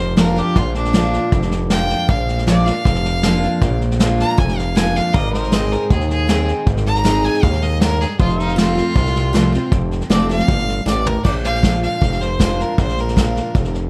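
A straight 4/4 pulse at 157 BPM, kept by a brushed vintage kit with dark cymbals, drives this sunny, down-home honky-tonk and classic country excerpt in Bb mixolydian. A clear, focused fiddle solos with light vibrato until 11.2 seconds, with a drum fill entering at 10.9 seconds to close out the solo. Beneath it sit a bright, full-bodied picked dreadnought acoustic, a gritty, saturated sawtooth synth bass with a resonant filter pluck sitting up front, and a clean pedal steel whose fingerpicked slide chords and volume swells stay in the background until 11.2 seconds, all in a dark production with light reverb.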